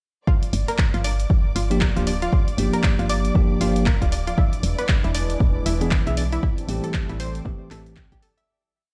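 Late-night and warm, this short deep house piece moves at 117 BPM with a swung 16th feel, as a punchy, tape-warm four-on-the-floor kick and a bright analog pluck running a chorused, tape-echoed arpeggio over Gm7 set up the groove from 0.3 seconds, joined by an analog drum machine's claps and closed and open hats at 0.4 seconds and a round, woody FM bass in a dotted rhythm at 0.5 seconds. A bell-like tine electric piano adds clean, syncopated chord stabs through a low-pass filter from 1.7 seconds, while a lush symphonic violin section holds a high note in the background. A smooth, warbling analog pad enters at 4.4 seconds on E7 before Am7, and the whole piece fades out from 5.7 seconds, with sidechain pumping on the bass, pluck, keys, strings and pad and a stone room reverb around it.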